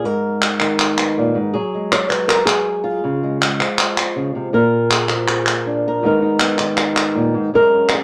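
A fingerpicked flamenco guitar with fresh-sounding strings and audible finger squeak carries the melody up front in this mournful yet fiery flamenco passage at 160 BPM in 4/4, joined at 0.4 seconds by crisp, close palmas hand claps in a live room, all set in a wet studio ambience as the harmony moves from Abmadd9 through Gbsus2, Db and Bb before returning.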